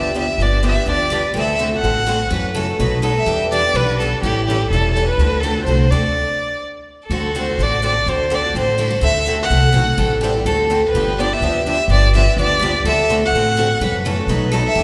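A playful, swinging stretch of gypsy-jazz string swing opens with the whole band at once: a bowed violin carrying the melody over three picked steel-string acoustic guitars and an upright bass. The violin sits up front and close, its single voice expressive, with vibrato, a soft attack and sliding portamento between notes. One guitar plays a bright second line beneath the tune, while the other two supply accompaniment, one with a warm tone and the other boxy and set in the background. The pizzicato upright bass, with its gut strings, sounds woody, dark and thumpy, and sits prominently in the mix. A full stop from 6.1 to 7.1 seconds breaks the flow before the band returns to restate the same material, all of it bathed in the generous reverb of a church or concert hall.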